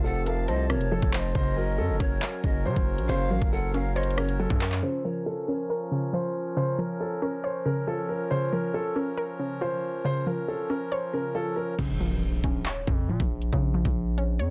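This dark, cold drill excerpt opens with a dusky concert grand piano carrying the melody through a low-pass filter and tape echo, joined by breathy, chiffy cane pan pipes on a brief second line, a warbling lo-fi pluck with chorus, and a reedy, nasal harmonium holding sustained chords. At 138 BPM in a half-time 4/4 feel and set in Bb harmonic minor, the harmony moves from F to Gb before settling on Bb minor at 4.8 seconds. A distorted, saturated 808-style bass and an up-front drill kit, with knocking kick, metallic hats, handclaps, rim clicks and a crash, drive the opening until 4.8 seconds, when they drop out and the pluck's filter sweep runs through a sparser middle stretch. The piano shows audible action noise and deep bass, while the pan pipes carry lifted highs before dropping out early. At 11.8 seconds the bass and drums return beneath a background electronic impact, with the pluck carrying on to the cut. 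The mix is dry, dense and heavily limited, with the bass and drums pushed forward.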